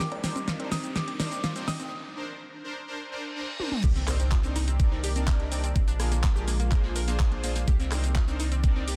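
Bittersweet and dreamy, this progressive house passage at 125 BPM in C minor opens with a build-up in which a crystalline, warbling FM bell carries a brief melody, shadowed by a very quiet, dark round pluck, over a sustained analog pad, chorused sawtooth pluck arpeggios, smooth phased supersaw stabs, a pop drum kit with a fat snare and metallic hats, background cowbell, bongos and congas, and a riser leading into a break at 1.9 seconds. A reverse cymbal and impact mark the drop at 3.8 seconds, where a knocking electronic kick and a tight, punchy, wave-folded sequencer bass drive to the front, joined by a muffled, gritty, cloth-damped drum kit. Light reverb and a dense, heavily limited master frame the warm, pumping Cm9 and Bb chords.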